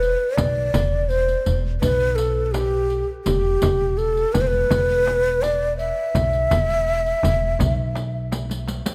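A breathy, mellow ney carries the melody up front with vibrato and a touch of tape echo in this hypnotic, longing Persian modal ensemble piece in E dastgah shur at 83 BPM, set over a woody pizzicato upright bass, a tight, very quiet tombak, a small, bright frame drum played with soft hands and a riq with dark jingles, all caught by close, detailed microphones with little reverb, and a drum fill at 8.3 seconds closes this cut from a longer piece.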